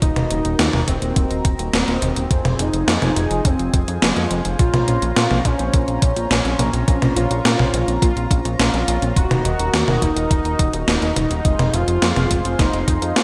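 A bright, 1980s-style digital sound sits in a lush hall reverb on this nostalgic, moody synthwave excerpt in Bb minor at 105 BPM, moving through Ebm, Fm and Bbmadd9. A thick, bold unison sawtooth lead with vibrato and digital delay carries the melody over a dark, shimmering pulse-width pad that pumps with sidechain compression, while a fat, detuned analog bass with a filter sweep anchors the low end. A thumpy, overdriven electronic kick and an up-front gated 80s drum machine with hi-hat, toms and a gated-reverb snare drive the straight 4/4 groove, and a very quiet, warbling, lo-fi pluck adds mellow arpeggios from 4.6 seconds.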